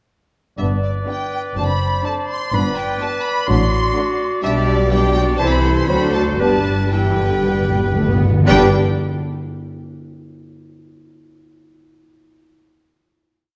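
A spirited, quick classical-period movement in G major opens at 0.6 s with a symphony orchestra: expressive, vibrato violins carry the melody over a bright clarinet and oboe, a mellow flute section doubles the tune in unison, distant French horns hold chords, and bowed cellos and double basses take the bass line under single timpani strokes, before a second violin line and lush violas join at 1.1 s and the timpani return with a fill at 6.4 s ahead of a final chord, set in a dark, reverberant scoring-stage sound with a rubato feel at 114-128 BPM.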